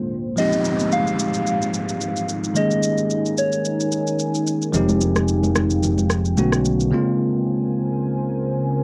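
A bell-like tine electric piano stands out from 0.4 seconds, bright, clean and up front, carrying the accompaniment through this short amapiano excerpt with a deep, late-night mood. Beneath it, a dark ambient pad holds sustained chords from the very beginning, detuned and moody, softened by chorus and its own reverb. A soft struck synth lead with a round, warbling vintage tone sings a brief melody until 4.4 seconds, colored by chorus and tape echo, while an electronic shaker and rim click set a swung groove and a downlifter sweeps downward. At 4.7 seconds a punchy fingered electric bass arrives alongside very quiet, saturated congas with thick skins, before the drums and bass drop out at 6.9 seconds, leaving piano and pad to close on a break. The whole piece has the hazy grain of a home cassette recording in a lightly reverberant room.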